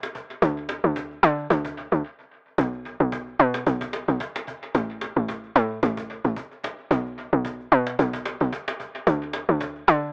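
A lightly swung 4/4 groove at 111 BPM drives this deep, late-night amapiano fragment in B minor, where a soft-handed, woody cajon with faint snares and tape echo sits far back beneath a tight, punchy FM log drum bass that enters at 0.4 seconds up front with a fast attack and noise layer. A brief break arrives at 2.0 seconds, all in a dry, echo-heavy mix with a small-speaker sound.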